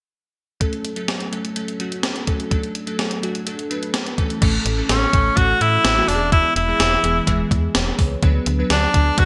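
Romantic and glossy, this 1980s-style pop fragment moves at a straight 126 BPM in A major, cut from a longer piece. Glassy, detuned digital keys with chorus and a sub octave open the passage at 0.6 s alongside an electronic drum machine whose thumpy kick and gated-reverb snare sit up front with crash cymbal, hi-hat and tambourine. At 4.4 s a snappy FM bass with a metallic attack joins, and a bright tenor saxophone enters at 4.9 s, carrying the melody with vibrato in a pop-style solo placed up front. The harmony travels from F#m through D, A and E before landing on Bm/D. A moderate plate reverb and digital ambience frame the bright, polished production.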